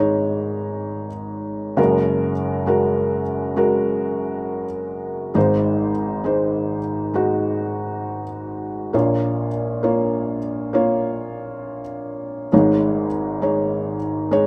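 A soft, muffled intimacy opens this short folk excerpt, with a felt-muted upright piano sitting up front in a light reverb. The piano plays alone from 0.0 to 14.5 seconds, its mellow, hushed tone spanning a range from Gb1 up to Db5. In Bb minor at a slow 67 BPM in a straight 4/4, the mood is melancholic and close. The harmony moves from Dbsus2 over Ab through Gbadd9 and Ab, settles on Bbm at 8.9 seconds, and returns to Dbsus2 over Ab at 12.5 seconds. Taken from a longer piece, this passage feels like a quiet, intimate moment caught mid-thought.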